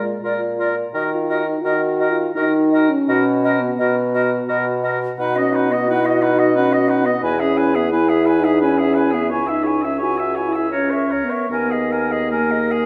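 Solemn and elegiac, this slow romantic movement for wind quintet moves in 3/4 at 74-89 BPM with a free rubato feel. A pure, straight-toned concert flute carries the melody over a clear, distant oboe second line, with a very quiet, soft-attacked warm clarinet and a dark French horn in accompaniment and a mellow, up-front bassoon with light vibrato holding the bass, set in a wet recital-hall reverb.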